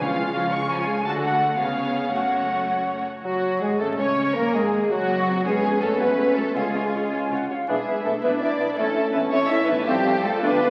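Stormy and urgent, this rubato classical passage in 6/8 at 109 BPM moves from F# minor to A major at 7.7 s, with lush, vibrato-rich violin sections carrying the melody and a second line up front over background violas, cellos and double basses, a brief hard-mallet timpani stroke at the start, and from 3.2 s an airy distant flute, a very quiet mellow clarinet, a vintage-toned bassoon and dark, soft-attack French horns holding sustained chords, all bathed in a wet scoring-stage reverb and the crackle of a very old 78 rpm record.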